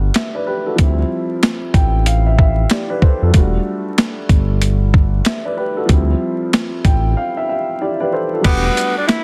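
Tough and dark, this boom-bap hip-hop cut moves at 94 BPM in E phrygian with a swung 16th-note feel, drifting between Em11 and Dm11 chords. A compressed, pitched-down sampler-style drum kit sits up front with a thumpy kick, a high-tuned snare, hi-hat, shaker and crash, sounding gritty. Beneath it, a smooth synth bass blends sawtooth and triangle tones into a nasal, sustained line with vibrato, while a mellow, woody upright piano, slightly detuned and vintage in character, holds long-sustaining chords through filtering. A break arrives at 7.2 seconds, and near the close a loose horn section drops brief filtered stabs with delay in the background at 8.4 seconds. A breathy tenor saxophone then slips in at 8.5 seconds with whispered, scooped subtone notes in an intimate jazz style, all over a small room ambience, vinyl crackle and a dense, heavily limited master.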